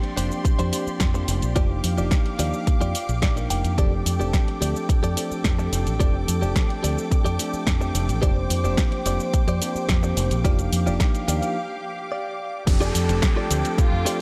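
Nu-disco at 108 BPM in F mixolydian, groovy and sunny, built on a punchy, up-front electronic kick, a house kit with cabasa and bright hats, and a foam-muted fingered bass, while a bell-like tine electric piano with analog delay comps and a picked, compressed clean guitar with subtle chorus and delay riffs over dark, woody strings whose sustained chords pump against the kick. The chords move between Bb69/F, Ebmaj9/F and F69, with guitar fills at 3.0 and 11.8 seconds and a break from 11.6 seconds. At 12.7 seconds the drop arrives with a downlifter, and a dark chamber violin section carries a short melody through tape echo in light reverb as this cut from a longer piece ends.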